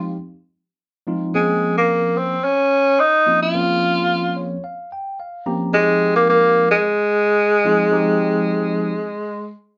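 Slick and driving, this short jazz excerpt swings lightly as an up-front tenor saxophone carries the melody with a vintage, warm, vibrato-laden tone. A clean tine electric piano, heard through its built-in speakers, accompanies it over Fm9 and Bbm9 chords and adds a fill from 4.1 to 5.7 seconds. A wet small-room reverb and a rolled-off top end give the sound of a band playing live together in one room.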